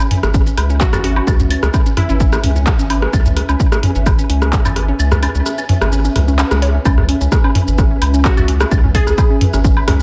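Lightly reverberant and clinical yet quirky, this minimal techno cut at 129 BPM in C# minor rides on an up-front, punchy kick, a deep, round analog bass and a tape-warm drum machine of handclaps, hi-hat and shaker, while a small-room electronic kit adds claves, rim clicks, toms and woodblock with tape echo. A hollow, bouncy square pluck repeats its riff in the background through chorus, tape echo and sidechain pumping, over a cloudy, evolving granular pad that breathes with the same pumping. A crystalline wavetable pluck surfaces briefly from 0.8 seconds, the kick drops out at 5.0 seconds, and the drop lands at 6.9 seconds.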